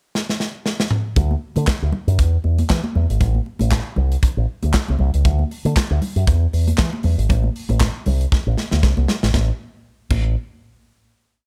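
A four-on-the-floor disco beat at 118 BPM in A dorian, with lightly swung sixteenths, open hi-hats on the off-beats and a snare layered with handclaps, sets a sultry, glamorous mood as a polished studio kit with punchy kick, crash, toms and bright cymbals plays a fill through the opening pickup bar. At 1.2 seconds the breakdown begins: an up-front, direct fingered electric bass with an envelope filter plays a syncopated line with chromatic approach notes, while damped, high-tuned congas with a thin skin keep a soft syncopated groove in the background. Another drum fill leads into the final note at 9.3 seconds, and the dry, close sound carries little reverb.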